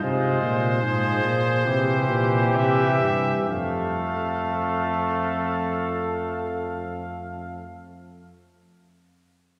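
A classical imitative canzona for brass ensemble, driving and serious at 61-77 BPM in straight 4/4 and slowing down over the first 3.5 seconds, finds an up-front clear trumpet with light vibrato carrying the melody over a warm flugelhorn second line, a brilliant vintage-toned trombone accompaniment and a warm, up-front tuba bass, all four playing throughout this 7.8-second cut from a longer piece as the harmony moves from Fm through C to F in a wet church reverb.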